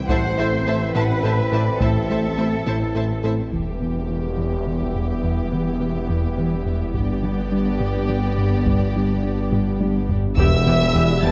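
A cinematic hybrid orchestral and electronic film score in 6/8 at 70 BPM, relentless and futuristic, built over Am, Em and G. Bowed violin sections carry a lush, vibrato-rich melody and second line over a very quiet viola accompaniment, a distant cello section, a hollow flute-like pad, a tine-like warbling thumb-piano-style synth pluck in arpeggios, and a prominent smooth gliding synth bass riff, while heavy-stick taiko drums pound in the background with a fill from 9.5 to 10.4 seconds. A clear trombone section drops out at 3.2 seconds and bowed double basses and a very quiet tuba at 3.4, all three returning at 10.4, as a dark, roomy French horn section and a menacing, saturated detuned saw bass enter at 3.5 seconds under a filter sweep, all set in a moderate concert-hall reverb in this cut from a longer piece.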